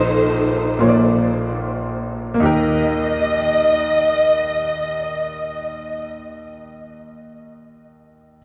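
A cavernous cathedral reverb with a long five-second tail soaks this brief fragment of a larger piece, giving it a dreamy, softened sound with its top end gently rolled off. It is a soulful, hopeful gospel passage in a straight 6/8, and it slows down over its opening 2.4 seconds. A dark, lush studio string section carries the melody up front, its bowed ensemble tone expressive and smooth, with vibrato, soft attacks and a touch of delay. Beside it, a clear grand piano with a vintage character and short sustain plays the accompaniment from deep in the bass up into the middle register, lightly colored by chorus. The harmony rests on a suspended chord that resolves before settling onto the home chord at 2.4 seconds, and the strings fall away at 6.1 seconds, leaving the piano to carry on until 8.4 seconds.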